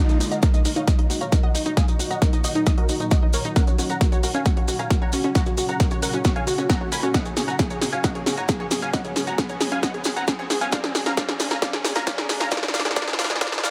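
Light reverb and a high-pass filter give this short cut from an uplifting trance track an airy, open sound, with an overdriven electronic kick placed up front from 0.4 s. At 134 BPM in a straight 4/4 and in Eb minor, the whole passage is one driving, soaring build-up, moving through Ebm, Gb, Dbsus4 and Bb7 under a continuous drum fill and filter sweep. A punchy, detuned supersaw stab carries the melody through a low-pass filter and digital delay, its sweeping filter and sidechain pumping pushing the lift. Beneath it, a lush unison pluck spins arpeggios with dub echo in the background, while a shimmering, ethereal pad holds sustained chords with chorus and its own reverb. A punchy analog drum machine supplies up-front snare and pumping hi-hats, grainy maracas sit behind, a tight, nasal sequencer bass holds the low end very quietly, and a faint electronic riser runs throughout.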